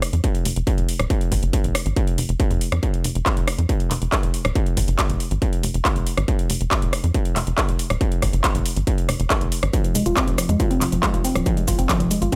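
A distorted, layered electronic kick sits up front in this driving peak-time techno excerpt, pounding in a straight 4/4 with an intense, hypnotic pull. Around it, an electronic kit of handclaps, rim clicks, shaker and metallic hats pumps through sidechain compression. A tight, nasal sequencer bass built from sawtooth and square waves rides low and punchy, its filtered plucks snapping in fast and decaying quickly as it pumps with the groove. At 9.7 seconds a woody, dark wave-folded pluck enters with a riff carrying a filter sweep, chorus and dub echo, adding an organic, percussive edge for the final stretch. The mix sits in a light digital ambience, with the piece cut from a longer whole.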